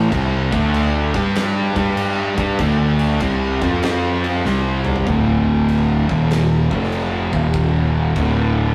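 This brooding, hypnotic stoner and doom metal excerpt swings its eighth notes in 4/4, cut from a longer piece and captured as a rough rehearsal-room recording with moderate studio reverb. Two thick fuzz guitars drive the riff from D2 up to G4, one dark and up front, the other warmer and set in the background. A brighter, double-tracked and compressed fuzz guitar also plays a riff in the background until it stops at 5.1 seconds. A growly, overdriven fingered electric bass sits up front, bright and direct, digging down to D1. An oversized low-tuned drum kit in a pumping stone room adds dark cymbals, a fat snare and a punchy kick with a gritty, saturated edge, and a drum fill from 4.4 to 5.1 seconds ushers in a second section built on power chords moving D5, Eb5 and F5.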